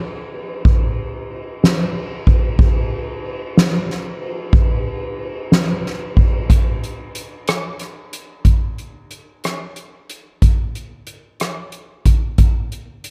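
A swaying 6/8 pulse at 61 BPM in dotted quarters carries this tender pop excerpt, played entirely on an acoustic drum kit struck with soft mallets from 0.0 to 13.1 s. Up front in the sound, the kit spreads across hi-hat, kick drum, ride cymbal, rim click and snare, with a fat snare, boomy kick and dark cymbals giving it a big-room character while the overall recording carries little reverb. The short passage moves through three sections, with changes at 6.5 and 8.4 seconds.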